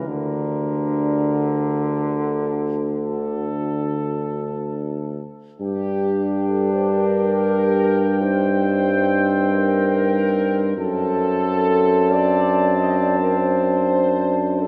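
A solemn, elegiac hymn for brass band opens on a G minor chord over D, with a dark French horn section carrying the second line, a clear trombone in accompaniment and an up-front tuba with a vintage tone holding the bass between D2 and G2. Almost at once the cornet takes the melody from A4 to A5, soft in attack and distant in the room, while a mellow, very quiet euphonium fills in the middle voices. The pace is slow and rubato, around 42-50 beats per minute counted in dotted quarters in 12/8. Every part plays in a classical style, and the cornet, horns, trombone and euphonium add a light vibrato. After a brief opening phrase, the music moves into a new section at 5.6 seconds on G minor, shifting to C minor over G at 8.2 seconds and reaching a D7 over F# at 10.8 seconds. A moderate church reverb gives the cornet, horns and trombone a roomy, far-off quality in this short excerpt cut from a longer piece.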